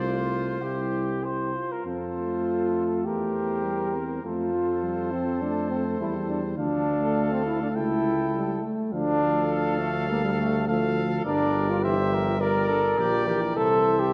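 A classical brass quintet opens together in this stately F major passage at a rubato 103 BPM, with a clear, soft-attacked trumpet singing the melody above a warm, distant flugelhorn second line, a mellow French horn in the background, and a smooth-topped trombone and roomy tuba bass up front, every player using light vibrato inside a wet scoring-stage reverb.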